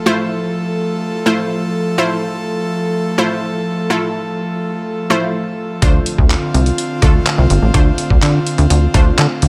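Dry and close with little reverb, this upbeat, carefree dance-pop excerpt in F major moves at 125 BPM in a straight 4/4. An airy, breathy pad holds soft sustained chords with a slow attack, long release and chorus, and a lush, detuned unison pluck plays bright, punchy accompaniment with a filter sweep; both parts pump against a sidechain. The harmony rests on Fmaj7 until 5.8 seconds, when it shifts to Dm7. At that point a plucky analog bass enters, funky and evolving, with a fast attack and decaying sawtooth and pulse-wave tones that also pump with the sidechain. A gritty, compressed, pitched-down trip hop drum kit arrives at the same moment, with a thumpy kick, hi-hat and handclaps set up front. The bass and drums carry the groove through to 9.5 seconds, where the recording cuts off.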